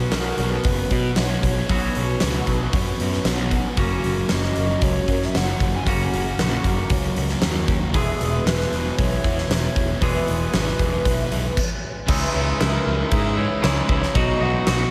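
A reedy, softly sustained FM lead with vibrato and chorus floats over a shimmering, octave-doubled twelve-string acoustic guitar fingerpicking arpeggios in the background. Meanwhile a thick, dark fuzz guitar riff, a twangy, clean electric guitar with reverse reverb and a round, overdriven picked bass fill out this wistful, blissful shoegaze and dream pop passage in B major at 116 BPM. A huge arena drum kit sits up front with a punchy kick, fat snare and bright cymbals in a dreamy, reverb-soaked mix, and after a brief stop at 11.6 seconds the harmony moves to C#madd9 at 12.1 seconds before settling on B.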